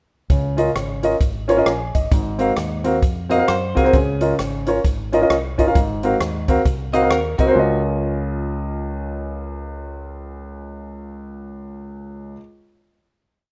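An uptempo, jubilant gospel piece in Db major at 132 BPM opens at 0.3 s with a concert grand piano playing off-beat drop-2 chords and short fills, its action noise and long sustain audible up front. Beneath it, a round, punchy fingered electric bass walks and runs with slides and chromatic approach notes, while a big-band drum kit drives a swung two-beat praise groove on hi-hat, kick and rim click. From 3.3 s a dark, compressed clean electric guitar with lush chorus adds short picked fills between phrases, and after the drums stop at 7.5 s, piano and bass settle onto a hopeful closing Db69 chord in a small-room, rough home-demo sound.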